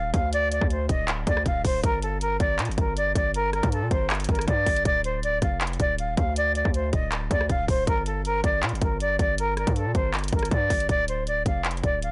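An airy, straight-toned concert flute carries the melody through tape echo over a heavy, distorted 808-style bass from the opening moment, with a trap drum kit of handclaps, rim clicks, metallic hi-hats and a hard-clipped kick joining at 0.1 seconds in a half-time feel. This menacing, hard-hitting trap and hip hop cut sways between D minor and G minor, and the whole mix sounds blown-out and overdriven, its top end dulled. A new section arrives at 10.9 seconds on a return to D minor before this fragment of a longer piece breaks off.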